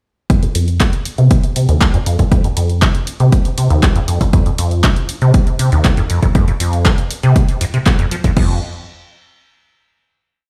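From 0.3 s a squelchy, resonant sawtooth acid bass line with accents and slides, under a filter sweep with subtle chorus, digital delay and sidechain pumping, drives this gritty, raw acid house piece at 119 BPM alongside an overdriven, punchy four-on-the-floor electronic kick and a programmed analog drum machine of hats, claps and crash, all ringing through a bare stone room on a big sound system until a band accent at 7.9 s and a final note that rings out to 10.4 s.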